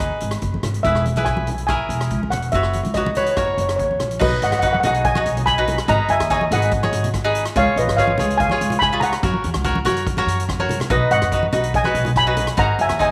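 A moderate echo-chamber reverb with small-room ambience surrounds this short, bouncy, carefree calypso cut from a longer piece, moving at 143 BPM in B major. Up front, a lead steel pan played with soft rubber sticks carries the shimmering, airy melody over a crisp, picked cavaquinho, while a woody, thumpy pizzicato upright bass and a street-band drum kit with a boomy kick, hi-hat, rim click and crash drive things along. Damped, low-tuned congas sit in the background from 0.5 to 12.5 seconds, and the kit breaks into a short fill at 10.5 seconds just before the harmony returns to B6.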